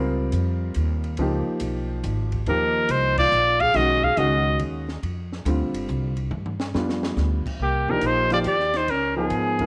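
Smoky and swinging, this cut from a longer small-group jazz piece moves in a brisk 3/4 at 140 BPM with a strong eighth-note swing, set in C minor. An intimate baby grand piano, its action noise audible, and a woody pizzicato upright bass with steel strings sit up front from the opening, while a compact cocktail kit with a dark, rolled-off top, punchy kick and high-tuned snare joins just after. At 2.5 s a clear, forceful trumpet takes the melody with light vibrato and scooped notes, joined by a breathy, growling alto saxophone on a second line in the background, its subtone gritty yet mellow, and both horns return near the close. A band accent lands at 3.1 s, and the drums play a fill starting at 6.3 s before the harmony turns to Cm7. The chords move through rich colours such as Dbmaj7, Eb69 and G7 under a light reverb.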